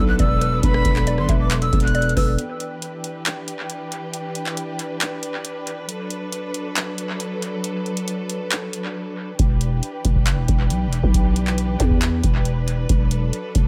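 Dark, brooding half-time trap in E minor at 137 BPM, this excerpt opens with an airy jazz flute melody over a felt-muted upright piano with audible action noise, a woody FM mallet-like pluck and a growling 808-style bass. The flute drops away at 2.3 seconds and the others at 2.4 seconds, leaving veiled con sordino strings and a booming analog drum machine with metallic hats and handclaps to carry a break until the bass returns at 9.4 seconds, all in an echo-heavy mix with tape echo on the flute, piano, pluck and drums.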